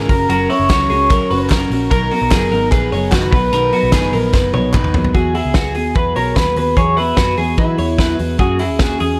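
Bright and youthful, this short excerpt of jangly indie pop moves at 148 BPM in a straight 4/4, with a slightly broken-up, twangy electric guitar through a small old amp carrying the melody with analog chorus and delay over twangy, compressed twelve-string electric arpeggios, a full-bodied dreadnought acoustic guitar, a round, foam-muted vintage bass and a loose indie drum kit with a fat snare up front, while a very quiet, distant group handclap joins from 0.7 to 4.8 seconds and a drum fill at 4.3 seconds leads the chords from F# and Bmaj7 into Eadd9 and F#add9, all set in light small-room ambience.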